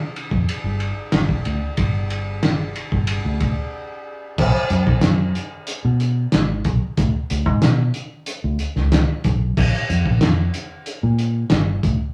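A rough, saturated rehearsal-room recording with moderate reverb and audible studio ambience frames this dark, trippy psychedelic rock fragment, cut from a longer piece, at 93 BPM in a straight 4/4. A cloth-damped, thuddy drum kit sits up front with a fat snare, tight kick, and muffled, dark crash, hi-hat and ride cymbals, while a fingered electric bass, foam-muted, round and punchy, moves between G1 and B2. A brief break at 3.7 seconds leads into a new section at 4.4 seconds that carries through to the cut at 12.0 seconds.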